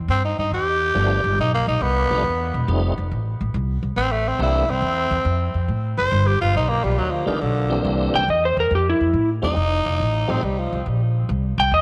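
Blues at 139 BPM with a swung 4/4 feel, rollicking and soulful, cut from a longer piece. A raspy, growling tenor saxophone with tape echo solos over woody, dark pizzicato upright bass, while tonewheel organ through a slow rotary speaker with overdrive and chorus vibrato provides accompaniment. At 8.2 seconds a slightly broken-up, compressed electric slide guitar enters up front with the melody as the chords move through C7 and F7, the band sitting in a moderate echo chamber reverb.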